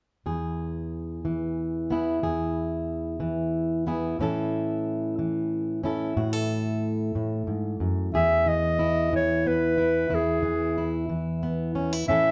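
A clear, close-miked classical-style clarinet enters up front at 8.1 s with a solo melody over a gentle, warm folk excerpt in E major at 61 BPM in a straight 6/8, where a fingerpicked, plugged-in jumbo steel-string acoustic guitar with woody, full-bodied old strings has been accompanying from 0.3 s, moving from E to A and back to E, all set in a dark production with light reverb.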